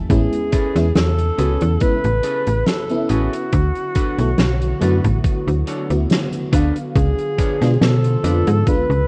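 Lightly swung sixteenths carry this faded, dreamy vaporwave excerpt, where a thumpy, up-front electronic kick and a soft-mallet kit with a fat snare and hi-hat sit under a snappy, tube-saturated FM slap bass and a round, dark FM electric piano, while a forceful alto saxophone with vibrato and sampler grit takes the solo melody, a bright, clean semi-hollow guitar riff drifts in the background through lush chorus and analog delay from 0.5 seconds, a very quiet warbling pad enters at 1.2 seconds, and the mix carries a rough cassette-tape home-demo sound with small-room ambience.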